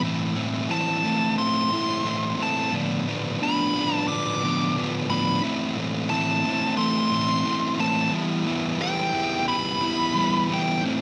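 Rock with a brooding, cathartic mood, this short excerpt from a longer piece is a build-up driven by an up-front, double-tracked fuzz guitar riff, warm, picked and compressed, spanning A2 to E4. At 0.7 seconds a smooth, dark overdriven lead guitar enters with a high picked melody between G5 and D6, colored by slapback echo. Both sit in a moderate digital stage reverb as the chords move from Am through Bdim/A back to Am and on to Em.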